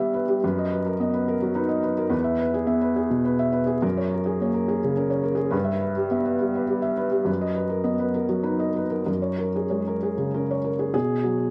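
A felt-muted upright piano plays alone from the start, its mellow, up-front tone carrying audible action noise in this tender, intimate fragment of neoclassical minimalist piano music. Set in B major and 3/4 at 104 BPM with a rubato feel, it moves through Bmaj7/F#, E, F#add9 and Em/G before returning and settling on B5 at 10.9 seconds. A wet studio ambience and vinyl crackle frame the piece, which is cut from a longer work.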